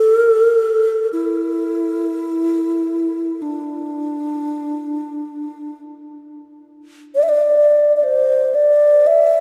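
A mellow, hollow alto flute plays alone in free time from the very start, its airy, softly attacked tone carrying vibrato and lifted highs as it ranges from D4 to E5, up front and touched with delay. The solo drifts through a vast, echoing cathedral reverb with a 5.9 second tail, giving this meditative world piece a haunting, spacious mood. This brief 9.4 second passage is cut from a longer piece.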